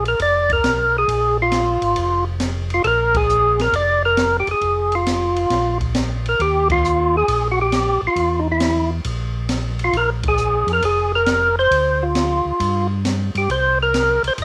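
Soul jazz organ trio in a swung 4/4 at 135 BPM, soulful and bluesy, centered on Bb mixolydian and moving through chords such as Fm, Ebadd9 and Dm7, in this short cut from a longer piece. A fat, percussive tonewheel organ sits up front carrying the melody through a slow rotary speaker, light overdrive and cassette tape coloring, while a mellow, round second organ holds the bass with chorus vibrato and its own slow rotary, and an open acoustic drum kit with dark cymbals, a high-tuned snare and boomy kick joins at 0.1 seconds. The band hits accents together at 3.1, 6.6 and 10.2 seconds, all heard in a small, moderately reverberant room with the intimacy of a home cassette recording.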